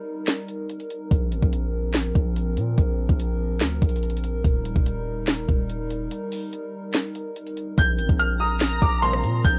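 Riding a half-time trap feel at 144 BPM in 4/4, this short cut from a longer hip hop piece moves between wistful and triumphant over chords that shift from Eb to Bbsus2 and back. A hollow, flute-like pad with a slow attack and chorus holds sustained chords from the opening, softened by cassette tape, while an electronic trap kit enters at 0.3 seconds with a knocking kick, sharp snare, metallic hats, handclaps and rim clicks placed up front. The hard-hitting 808-style bass arrives at 1.1 seconds, punchy and heavy with a sine tone, a noise layer and a decaying tail, and breaks thin the groove at the start and again from 6.1 to 7.8 seconds. At 7.8 seconds a dark, mellow, boxy grand piano takes up a high melody, followed briefly by a lush, bowed violin section carrying vibrato through analog delay, and a glossy, retro polysynth stab with pulse-width modulation and a filter sweep sits in the background just after 9 seconds. 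The home cassette recording is dry, with lossy compression artefacts giving it a worn, intimate grain.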